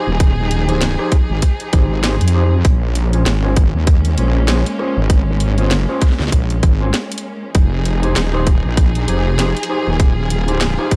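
A dry, gritty hardware sound frames this swaggering glitch hop excerpt in F minor at 98 BPM, swung on the sixteenths, moving from Fm7 to Bbm7 at 2.7 seconds and back to Fm7 at 7.5 seconds. A tight, overdriven electronic kick sits up front beside a heavy, detuned, chorused wobble bass, while a layered electronic kit adds a cracking snare, bright hats and rim clicks. A rich, bowed chamber string section holds vibrato chords, and a dark, clean electric guitar plays fingered stabs through a filter sweep and tape echo, both pumping against the sidechain.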